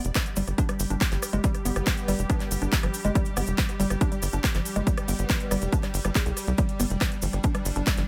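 Psychedelic trance at 140 BPM in G major, alien and psychedelic in this short cut from a longer piece, driven by an overdriven, up-front electronic kick entering at 0.2 seconds and a tight, punchy sequencer bass, with a techno kit of handclaps, metallic hi-hats and rim clicks, a grainy cabasa in the background, a woody wave-folded pluck riff carrying dub echo and sidechain pumping, a faint formant-sweep wobble bass from 1.8 to 6.5 seconds, and an evolving, bright wavetable pad holding sustained G chords under ensemble chorus.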